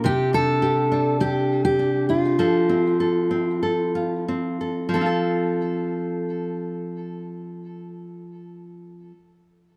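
The straight 4/4 pulse sits between 89 and 105 BPM, slowing through the first 4.9 seconds before the music moves into a new section. This short fragment of easy-going, carefree acoustic pop is in F major, tuned to A4 = 438 Hz, and moves from Csus2 to F at 2.4 seconds. A fingerpicked nylon-string guitar carries the accompaniment up front with a classical, warm tone, and its finger squeaks remain audible. Above it, a fingerpicked steel-string acoustic guitar with a full-bodied jumbo sound plays the melody in a narrow upper register, touched with delay. Both guitars sit up front in a moderate plate reverb that lends the pair a soft, lingering halo.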